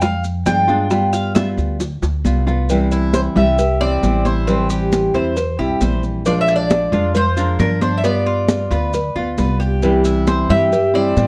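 A bright, metallic Cuban tres with octave-doubled double strings stands out from the start of this sunny Cuban son and guajira excerpt, taking a solo over the band for the first 2.7 seconds before carrying on in picked arpeggios, while a drum fill comes in near the end of that solo. At 3.1 seconds a second tres enters with a warm, plate-reverbed melody. A full-bodied, deep classical nylon-string guitar is fingerpicked up front, and a woody, growly, thumpy pizzicato upright bass on steel strings sits beside it. High-tuned, damped congas played with soft hands sound close and dry, round low-tuned bongos and cowbell sit in the background, and grainy maracas add a faint shimmer. The straight 4/4 groove runs at 134 BPM in C major, moving through Bb7, G7, C and Am7 chords, all heard through light reverb and the worn, warbling pitch drift of old cassette tape.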